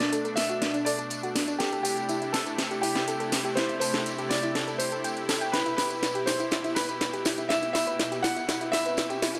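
A straight 4/4 pulse at 122 BPM drives this short, emotional and expansive progressive house build-up in E minor, cut from a longer piece, with a drum fill running across its full 9.4 seconds. Up front, the electronic house kit layers cracking snare and metallic hats, tape-warm and re-recorded in a small room, while a jingly, band-limited tambourine adds a vintage acoustic shimmer beneath. A clear, open baby grand piano carries the melody with short sustain, roughened by 12-bit sampler grit and trailed by tape echo, as a soft, round pluck spins dark arpeggios through subtle chorus and its own tape echo. Underneath, a lush, airy supersaw pad holds detuned sustained chords through Bm7, C6 and Em, and a thick, saturated sub bass sits barely audible at the bottom. A very quiet electronic riser enters at 7.1 seconds, and moderate digital room reverb gives the whole a spacious ambience.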